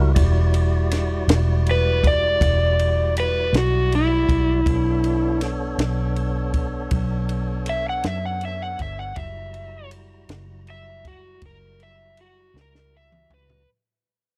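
A slow blues in 12/8 moves at 53 dotted-quarter beats per minute with a straight feel, setting a smoky, brooding mood. A compact cocktail drum kit sits up front with a punchy kick, high-tuned snare, dark ride cymbal and toms, ending on a drum fill from 12.6 seconds. A vintage muted fingered electric bass gives a round, amped, foam-muted low end, while a tonewheel organ holds fat, clean sustained chords through a slow rotary speaker, its key click and vibrato adding character. From 1.7 seconds an overdriven slide guitar carries the melody with a fingered tone over chords moving from Em9 to Bm9 to F#7b9. The dry, close recording has a small-room 1970s studio character, and this fragment of a longer piece fades out across its length.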